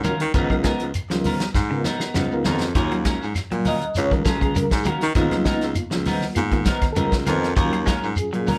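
A straight 4/4 afrobeat groove at 100 BPM in Eb minor drives this short, hypnotic and defiant cut from a longer piece, anchored by an up-front soul drum kit with a tight kick, medium-tuned snare and hi-hat recorded naturally in a small room. A breathy baritone saxophone carries the bass line from Db2 to Eb3, close-miked and clear with vibrato and a soft subtone, sitting prominently in the mix. Congas with a thick skin, a grainy shekere and woody claves fill the background, while a bright, twangy electric guitar at the edge of break-up picks arpeggios between Db3 and Ab3. A clean semi-hollow electric guitar adds stabs through a lush chorus, and a reedy electric piano with fast tremolo plays accompaniment before taking a solo from 2.8 seconds to the end. A drum fill from 1.5 to 2.8 seconds leads into that solo, the harmony alternating between Db13 and Ebm9, all set in a moderate club reverb.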